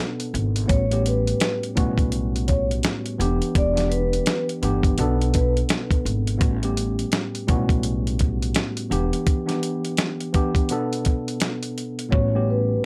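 Boom-bap hip-hop at 84 BPM in E dorian, this reflective, moody cut from a longer piece carries a swung 16th-note feel and light reverb. A worn, slightly out-of-tune tine electric piano sits up front with a filtered tone beside a gritty, compressed sampler-style drum kit with a thumpy kick and fat snare, while a woody, dark pizzicato upright bass on gut strings holds the low end. A mellow vibraphone played with soft mallets and slow motor vibrato carries the melody from 0.7 to 5.5 seconds and returns at 12.1 seconds as the hi-hats drop out, its ringing, metallic tone filtered and set in plate reverb and delay.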